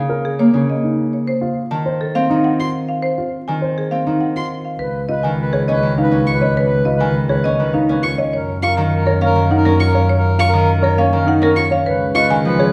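Set back in a wet, large studio reverb, this hypnotic, propulsive minimalist pattern piece in 3/4 at 102 BPM, cut from a longer work, has woody hard-mallet marimba carrying the melody over ringing fingerpicked Celtic harp and dark, smooth grand piano arpeggios, joined at 2.6 s by expressive bowed violin arpeggios with vibrato and portamento, and at 4.8 s, as the harmony settles into Db mixolydian, by a mellow, distant soprano saxophone second line and an even, close double bass holding the bass up front.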